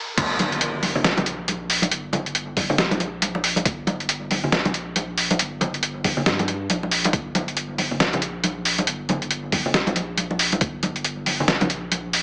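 Up front sits a gritty, pitched-down trip hop sampler-style kit of crash cymbal, hi-hat and a medium-tuned snare, overdriven and compressed, driving this meditative, cavernous deep dubstep cut in G minor at 138 BPM with a half-time feel and swung 16ths. The drop hits at 0.2 seconds with an electronic impact that ends at 1.9 seconds. It is joined by a thumpy, overdriven, high-pass-filtered electronic kick that stops at 10.7 seconds and a deep, round sub bass built from triangle and square waves, with ringing soft-handed congas trailing dub echo entering just after, at 0.4 seconds. A moderate spring reverb and a small speaker sound give the whole passage, taken from a longer piece, a lo-fi, echoing space.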